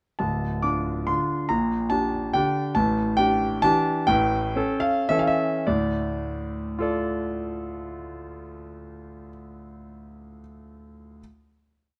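A clear, up-front concert grand piano carries this brief, bittersweet classical waltz in D minor, tuned to A4 = 435 Hz, pairing a single-line melody over a waltz bass with a deep low end and a vintage tone, its rubato pulse of 97-150 BPM slowing from 2.1 seconds before it settles on a final D minor chord at 5.7 seconds amid light reverb and close, detailed miking.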